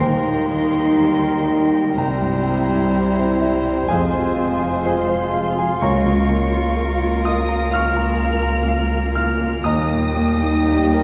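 In a slow, rubato 4/4 at 62 BPM, this lyrical, lush romantic passage for piano and orchestra, cut from a longer piece, sets an up-front, clear concert grand piano with deep bass on the melody, joined on the melody by a very quiet, expressive symphonic violin section, while an upper violin section with a focused, smooth top, a distant oboe, an airy, hollow flute and a soft-attack clarinet add second lines. Beneath them sit a background bassoon, a viola section with portamento, mellow, vintage-toned French horns holding chords, and a bass of rich cellos and woody double basses, with round, soft-mallet timpani heard only in the first 1.5 seconds. The harmony moves from Eb through C7, Fm and Bbm/Db before returning to Eb at 9.7 seconds, all heard from further back in a wet scoring-stage reverb.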